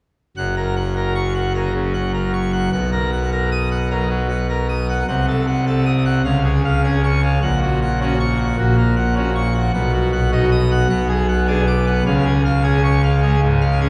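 A solo pipe organ on full registration, bright with mixtures, audible chiff and baroque voicing, sits up front and fills the range from F#1 to D#6 in this majestic, jubilant classical toccata in F# major at 103 BPM in a straight 4/4. Playing from 0.4 to 13.9 s, the organ moves through F#, Bmaj7 and Cdim7 before settling on C#, then passes through F#/A#, B and G#m7b5/B to close on C#. A wet church reverb with a 3.2-second tail surrounds the sound, and the passage is cut from a longer piece.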